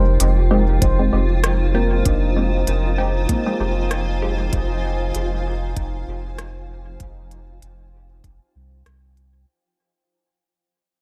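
Lightly reverberant and fading out across its 9.5 seconds, this hazy, deep ambient dub excerpt at 97 BPM in F dorian rests on a round, up-front sub bass beneath a blurred granular cloud pad sustaining Fm7, while a ringing handpan with dub echo and a muted, phased chord stab with lush chorus both fall away by 5.4 seconds, a resonant, bubbling stepped-filter texture sits in the background, and tape-warm electronic drums re-recorded in a small room bring crisp hi-hats, rim clicks and a soft kick with a gentle 16th-note swing.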